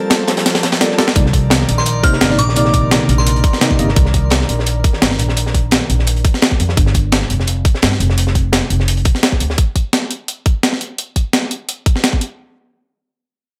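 A worn, slightly out-of-tune tine electric piano with light overdrive and dub echo opens over an airy, breathy pad on Gm11, joined almost at once by a gritty, sampler-style breakbeat and a darker, smooth, high-tuned kit in the background, with a drum fill closing out the drop. At 1.2 seconds this soulful, dreamy liquid drum and bass settles in at 171 BPM in G minor, as a tight, layered electronic kick and a woody pizzicato upright bass arrive up front over Cm9 and the pad pumps with the sidechain. A crystalline FM synth bell with phaser and digital delay briefly carries the melody up high, and the piano falls away at 3.9 seconds, all set in a light, small-room ambience.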